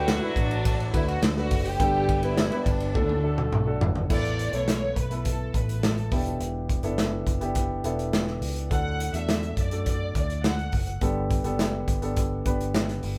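A punchy, up-front acoustic drum kit drives this uplifting, anthemic piano-driven pop excerpt at 104 BPM in D major, with a fill from 3.0 to 4.1 seconds carrying it into a second section over chords moving from D and Gadd9 to Asus2 and Em7. A warm concert grand with deep bass provides the accompaniment, while a dark, round, foam-muted fingered electric bass anchors the low end. Up top, a lush, distant violin section sings the melody with vibrato and portamento until 10.9 seconds, joined at the opening by a nasal, metallic stopped French horn section on a second line that drops out at 3.8 seconds, all set in a moderate studio room that sounds like a band playing live together.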